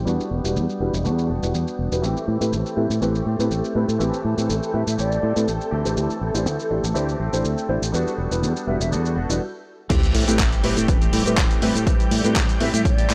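A punchy, tape-warm electronic kick arrives at 9.9 s with a sub drop to open the drop of this groovy, sensual filtered disco house excerpt, following a filter sweep and a brief stop, while a round, up-front fingered bass, a twangy clean guitar riff, dark grand piano accompaniment with audible action noise, a gritty, overdriven sampler-style kit of claps, hats, shaker and crash, a swirling, phased string machine and short airy flute phrases each pump and sit beneath a low-pass filter in a dry, gritty mix.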